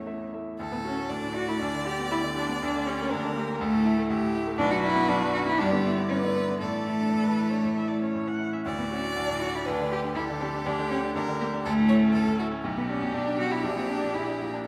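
Set in a wet scoring-stage reverb, this lively, cheerful excerpt from a classical-period piano quartet movement features a close, smooth violin melody with vibrato over a warm, even cello second line, while a brilliant, up-front baby grand piano and a focused viola in the background supply the accompaniment throughout its 14.7 seconds.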